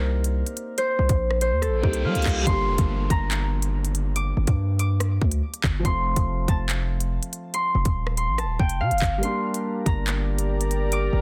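A fingerpicked Celtic harp carries the melody up front, its mellow, ringing tone trailed by digital delay, over a dark grand piano and a distorted, heavy 808-style bass with a fast attack in this cold, dark half-time drill excerpt. An electronic drill kit with a hard-clipped kick, crisp hats, handclaps and rim clicks drives the groove, while a reverse cymbal and downlifter sweep through between 1.8 and 5.8 seconds. As a brief break arrives at 9.2 seconds, a smooth, warbling analog pad with chorus enters on sustained chords, all within a dense, heavily limited modern master.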